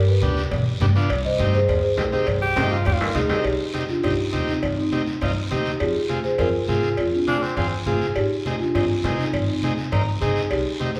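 Drenched in a lush studio reverb, this fiery, passionate cumbia fragment captures a band playing live together in one room, with a mellow rosewood marimba carrying the melody over a woody, thumpy pizzicato upright bass and buzzy vintage combo organ chords bathed in spring reverb. Low-tuned, thick-skinned congas sit distant in the room, alongside a raspy, saturated guiro and ringing, band-limited cowbell and timbales. A clear, breathy tenor saxophone with vibrato slips in at 2.4 s over a drum fill, then returns briefly at 7.3 s.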